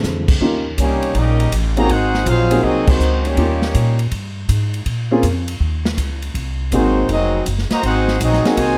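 Set in light reverb, this brassy, joyful big band swing excerpt pairs a natural baby grand piano, a woody pizzicato upright bass and an airy, polished drum kit with a punchy kick beneath a tight, smooth-topped trumpet section on the melody and a clear trombone section on the second line, the horns entering at 0.8 s and returning near 6.7 s after a pause, with a band accent at 2.8 s.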